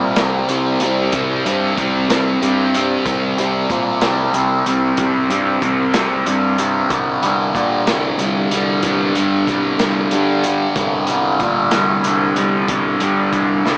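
A double-tracked fuzz guitar riff, bright and distorted with a phaser, opens this trippy, hypnotic psychedelic rock excerpt in 6/8. It arrives alongside a growly, overdriven picked electric bass, with a crunchy breakbeat drum kit of hi-hat, tight kick and snare joining at 0.2 seconds, saturated and gritty with a rolled-off top. The riff holds on a C5 power chord before shifting to G5 over C at 6.9 seconds, all framed by light reverb and a small-speaker sound.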